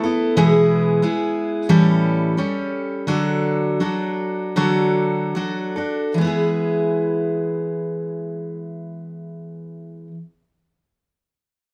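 In a straight 4/4 that slows between 0.4 and 6.2 seconds, this gentle, pastoral folk passage, cut from a longer piece, features a lone picked steel-string acoustic guitar, full-bodied and up front with fresh strings and audible finger squeak, moving through E/B, A7 and D before arriving on E at 6.2 seconds, set in a moderate studio reverb.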